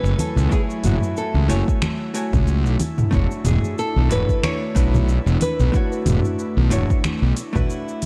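Sunset chillout in a smooth, relaxed mood, this short excerpt moves at 92 BPM in 4/4 with a 16th-note swing, resting on F#m9 before shifting to E13sus4 at 2.8 seconds. A fingerpicked nylon-string guitar carries the melody between F#4 and C#5, its small, warm tone trailed by delay and shimmer reverb, while an airy, breathy pad sits in the background with chorus and a bright shimmer. A fuzz fingered electric bass sits up front, round and punchy with overdrive, anchoring the low end from E1 to C#2. A deep house kit of finger snaps, metallic hi-hat, shaker and toms enters at 0.1 seconds, and a deep, overdriven electronic kick drum joins it at 0.5 seconds, both re-recorded in a large room, while low-tuned congas with a thick-skinned, soft-handed sound stay close and dry in the background. A clean, compressed hollow-body jazz guitar adds picked accompaniment with delay and shimmer reverb, and the whole mix has a dark production with light digital ambience.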